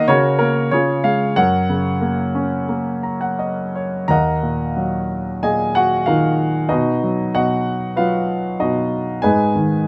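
Close, detailed microphones and light reverb give this short recording an intimate, polished sound, with the grand piano placed up front. It is a lyrical classical solo for piano alone, relaxed and sunny in mood, moving in 4/4 at about 82-97 BPM with a flexible, rubato feel. The warm, present instrument covers a range from Eb2 to A#5. It opens in F# major, settling on F# harmony after a C# chord, and a piano fill from 2.7 s carries it into a new passage at 4.1 s, where the music turns to Eb minor. From there the harmony moves through B and closes on Abm near 9.2 s, as the clip breaks off from a longer piece.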